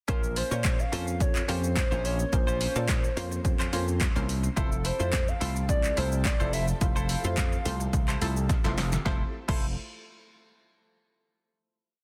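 A summery, euphoric dance-pop piece opens at once on a punchy, tape-warm analog drum machine driving a four-on-the-floor beat with clap layered on snare, a growly envelope-filtered slap bass playing a syncopated figure up front, a twangy, choppy clean guitar riff, syncopated analog pluck chords pumping in the background, a very quiet organ-like ensemble pad, and a hollow, woody clarinet-like synth lead singing hook phrases with vibrato, moving from Bbmadd9 to Fmaj7 before a drum fill at 8.5 seconds leads into a final chord ringing out to 11.3 seconds in a dense, heavily limited modern mix.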